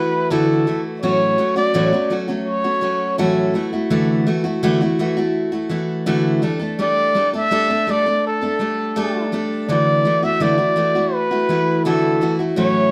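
A straight 4/4 pulse carries this carefree, sunny pop excerpt, with a picked steel-string acoustic guitar laying down full-bodied jumbo chords, finger squeak and all, that move through Dadd9, A6 and Gsus2. Up front, a breathy trumpet sings the solo melody with a soft attack, gentle vibrato and a close-miked, whispered intimacy. The band sounds as if it is playing live in one room, bathed in a wet studio reverb.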